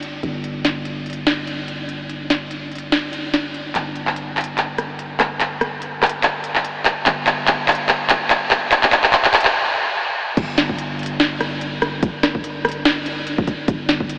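Swung, half-time future bass at 145 BPM in 4/4 with an emotional, dreamy mood, this fragment of a longer piece pairs an up-front trap kit of sharp snare, crisp hi-hats, handclaps, rim clicks, ride and crash with a deep, mellow sine 808 bass that decays under sidechain pumping, building through a drum fill from 3.8 seconds to a brief stop at 9.5 seconds before a hard-clipped electronic kick lands on the drop at 10.4 seconds, the mix soaked in huge ambient reverb and filtered to a thin AM-radio tint.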